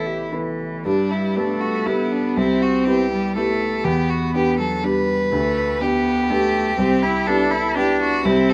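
A rubato waltz-time lilt carries this tender, intimate neoclassical fragment from a longer piece, where a rich, smooth-topped violin sings the melody with vibrato over a clear, focused cello second line, both bowed by single players, while a soft felt-muted upright piano gives mellow, close-up accompaniment through shifting chords like Gadd9, Cmaj7 and Em7 in a moderate studio reverb.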